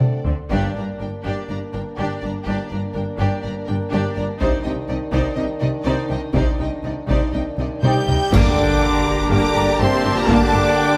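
A saturated taiko ensemble pounds beneath lush, vibrato-rich violins and distant, mellow French horns as this relentless, dark cinematic orchestral cue in G minor drives forward at 123 BPM. Violas, cellos and double basses fill out the body of the strings, with a second violin line under the soaring violin melody, while bright cymbals, clash cymbals and concert bass drum join from 4.4 seconds. At 8.3 seconds a huge impact lands, carried by a reverse cymbal and sub drop, a very quiet timpani hit and clear, sustained string chords, while warm trumpet stabs, pure background flutes and bright, loose trombone chords, entering just before, thicken the texture in a moderate scoring-stage reverb.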